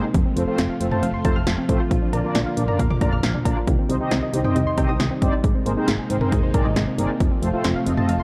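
Cool and driving, this short synth-pop excerpt moves at 136 BPM in a straight 4/4, cycling through F, Bb, C minor and an Abadd9 before landing back on F. A punchy analog drum machine sits up front with overdrive on its kick and snare, working through cowbell, hi-hat and toms. Beneath it, a solid FM bass gives round, fast-decaying notes in a low register. Mellow synth brass carries the accompaniment with a detuned, brassy tone, a filter sweep, vibrato and chorus. A soft, round pluck spins arpeggios across a broad range, its dark, wave-folded timbre thickened by chorus and a slapback echo, while a vintage string machine on cellos holds warbling, slow-attack chords in the background under an ensemble chorus. Light digital reverb wraps the whole in a dark, warm production.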